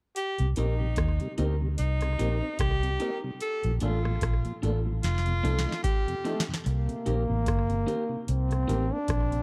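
Roots reggae at 74 BPM in C dorian, hypnotic and serious, with a gently swung sixteenth-note feel and a slightly flat tuning, heard as a short cut from a longer piece. A booming analog drum machine sits up front with a deep kick, crisp snare, metallic hats and rim clicks, touched by slapback echo, and it plays a fill from 5.0 to 6.7 seconds. Beneath it, a dark, foam-muted fingered electric bass gives a round, punchy low end, while a slightly broken-up electric guitar through a small old amp adds a compressed, picked part soaked in spring reverb and tape echo, over a mellow tonewheel organ in the background with chorus vibrato and a slow rotary speaker. A breathy, whispered tenor saxophone carries an intimate second line with tape echo until 6.4 seconds, and a close-miked trombone takes the melody from 6.3 seconds as the harmony returns to Cm7 after moving through Bbmaj7 and F7. The sound is a dry, close 1970s-style studio recording with a digital ambience.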